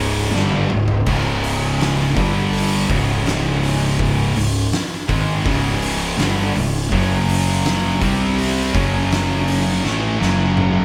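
Stoner and doom metal at a slow 82 BPM, heavy and brooding, captured as a band playing live in one room with light reverb in this short cut from a longer piece. Two thick fuzz guitars sit in the background beside a bright, tight, double-tracked distorted guitar, all playing riffs over power chords that move from C#5 to G5 to F#5 and C5, while a growly, overdriven fingered bass with fuzz holds down the low end. An oversized low-tuned drum kit with a fat snare, punchy kick and dark cymbals enters at 0.4 seconds in a pumping stone room, with drum fills at the start and again from 9.8 seconds.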